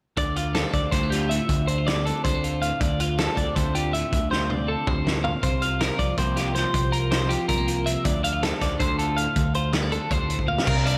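A big, arena-sized sound wraps this excerpt in a moderate scoring-stage reverb, giving the math rock and midwest emo playing an intricate, wistful air. Set in D minor and a straight 7/8 at 320 BPM counted in eighths, it brings in all four parts together, led by two clean, picked twelve-string electric guitars: one sits up front with compressed accompaniment chords, while the other spins twangy, bright arpeggios higher up, trailed by a digital delay. Beneath them, a growling fingered electric bass holds a low register with a punchy, overdriven bite. The loose indie drum kit is close and mid-forward, with a fat snare, a thumping kick, and a gritty, saturated character whose top end is rolled off, moving across crash cymbal, hi-hat and toms. A drum fill at 4.3 seconds leads the harmony from Dm9 to C7sus4 at 5.4 seconds, then the chords settle on Dm7 at 8.1 seconds, with one more fill arriving near the close.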